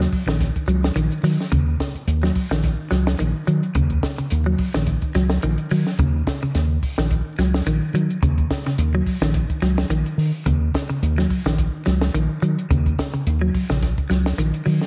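Afrobeat in Eb minor at 107 BPM with a light 16th-note swing, this hypnotic, intense fragment of a longer piece sits on a single Ebm7 chord for its full 14.9 seconds. A clean, hollow-bodied semi-hollow electric guitar plays fingered arpeggios up front, while a round, punchy fingered electric bass carries the low end. A compact cocktail drum kit with a high-tuned snare, punchy kick and rolled-off top keeps time on hi-hat, kick and snare, all inside a moderate echo chamber reverb.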